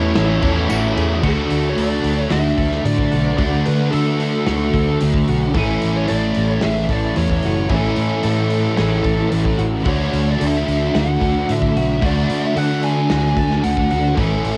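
This hazy, wistful piece of shoegaze and dream pop rock opens on a wall of guitars and bass, and a loose indie drum kit joins at 0.2 seconds at a straight 111 BPM in 4/4, in D lydian with tuning at A4 = 439 Hz. Two low riff guitars carry the weight: a biting overdriven guitar sits up front, touched with reverse reverb, while a thick, dark fuzz guitar is smeared by ensemble chorus. Above them, a fuzz lead guitar sings the melody through distortion and analog delay, and a bright, twangy twelve-string electric guitar plays compressed arpeggios in the background, glazed with analog chorus and delay. A vintage muted fingered electric bass gives a round, foam-muted low end, and the acoustic kit, with its tight kick and rolled-off top, uses crash, ride, hi-hat, snare and kick, while a jingly tambourine flickers briefly from 0.7 to 0.8 seconds. The chords move from A6 to D, then to Amaj7 and back to D, on a dry home cassette recording cut from a longer piece.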